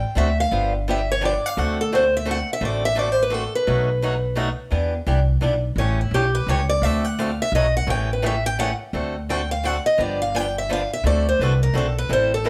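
An upbeat stretch of acoustic string swing in the jazz manouche style opens with a picked steel-string acoustic guitar carrying the melody over an upright bass. Both start at once, and a second picked swing-style acoustic guitar joins on accompaniment at 0.2 seconds. The lead guitar sounds bright and boxy with a parlour character, sitting up front with a touch of plate reverb as it solos through two passes of the same theme, the second beginning at 8.9 seconds. The bass is plucked, woody and thumpy on gut strings, also close and present, while the rhythm guitar plays a little further back in the mix with its own picked swing sound. In 3/4 at 171 BPM with a swung eighth-note feel, the tune moves through seventh-chord changes in D mixolydian, with a moderate studio room adding a light sense of space to this playful, lively fragment of a longer piece.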